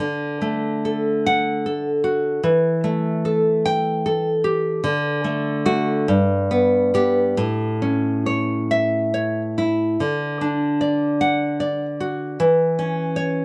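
A fingerpicked nylon-string guitar plays alone and up front in this tender, sunny romantic piece for solo classical guitar, its fresh strings giving a bright, detailed tone with audible finger squeak. The music moves in 6/8 with a free, rubato feel, spanning from G2 up to G5. Close microphones and light reverb keep the short passage, cut from a longer work, intimate and clear.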